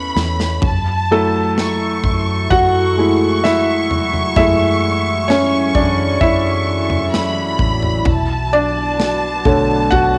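A heartfelt, emotional pop ballad excerpt recorded at home on cassette in a small room with light reverb, led by a soft, intimate felt-muted upright piano sitting up front with audible action noise, which carries a solo throughout over chords moving from Esus4 to F#m7 and then Bm7. A drum fill on the punchy modern kit opens the piece at 0.0 seconds, and a dark, round foam-muted electric bass holds the low end. A distant, lush violin section adds a bright, vibrato-laden second line through analog delay, while a glassy, ethereal FM pad with ensemble chorus enters at 1.6 seconds to sustain chords in the background.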